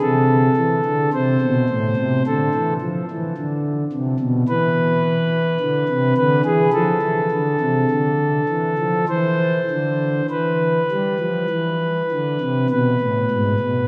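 In a slow, rubato 4/4 at roughly 49-55 BPM, this dark, grave classical chorale for solo pipe organ sets a smooth, baroque-voiced principal stop up front in a resonant cathedral-like space with a 4.3-second reverb tail, moving through Am/C, Dm and E5 across a short 13.9-second passage drawn from a longer piece.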